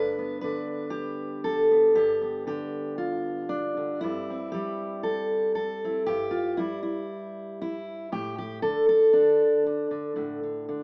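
Haunting and intimate, this short cut from a longer folk piece features a single fingerpicked steel-string acoustic guitar playing solo throughout its 10.8 seconds. The tempo sits at 117 BPM in a straight 4/4 feel. The dreadnought guitar has a full-bodied tone and stays up front as the sole voice, spanning G2 to B4. The harmony moves from G to C/G at 4.0 seconds, then to Asus4 at 8.1 seconds. A wet studio reverb surrounds the playing, and the sound seems heard from further back in the room, with a small-speaker character.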